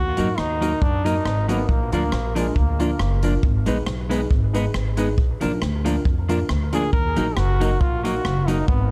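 Ska with a mischievous, driving swing, heard as a short cut from a longer piece in a dark, small-room production: a growly, woody pizzicato upright bass sits up front beside a punchy kick, hi-hat and rim clicks from an airy, polished big-band kit. A clean, picked electric guitar supplies the accompaniment while a mellow, worn upright piano, slightly detuned and with audible action noise, adds stabs trailed by dub echo. Over a minor progression, a brilliant, forceful trombone carries the melody with vibrato and scooped notes, its phrases also soaked in dub echo, playing until 3.2 seconds and returning at 6.7 seconds.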